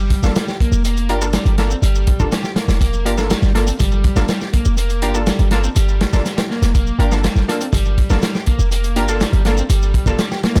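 Funky and swaggering, this short breakbeat cut from a longer piece rides a straight 122 BPM groove in G minor, resting on a Gm9 chord throughout. A dark, punchy breakbeat kit with a medium-tuned snare and rolled-off top sits up front beside a deep, boomy 808-style sine bass, while an analog electronic shaker ticks along beneath. Over them, a bright, double-tracked overdriven guitar riff carries vintage 12-bit sampler grit and digital delay, and bold, detuned sawtooth orchestra-hit-like stabs with ring modulation and filter sweeps hit from 0.2 seconds, trailing their own reverb and delay in an otherwise dry mix.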